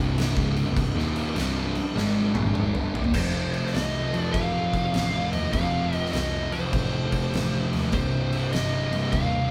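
An oversized, low-tuned acoustic drum kit sits up front in this ominous, heavy stoner and doom metal passage cut from a longer piece, with a punchy kick, fat snare and dark cymbals ringing in a bright stone room, and a fill at 2.0 s. Two thick, fuzz-distorted guitars grind out a swung riff over Cm and F in the background, joined by a bowed double bass with overdrive, vibrato and expressive portamento, while a very quiet, nasal, string-like drone with a slow attack creeps in at 1.5 s. At 3.1 s a picked fuzz lead guitar takes the melody, all of it captured as a band playing live in one room with light reverb.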